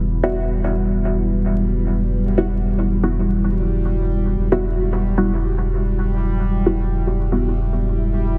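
Swung sixteenth-note 4/4 dub techno in a cavernous, deep mood, this fragment of a longer piece sets a round, soft sub bass up front beneath a dark, moody ambient pad with a filter sweep, a bubbling, resonant texture of random filter steps, and muted, detuned chord stabs arriving at 0.2 seconds with phaser, 12-bit sampler grit and dub echo, all framed by light reverb, vinyl crackle and a dense, heavily limited master.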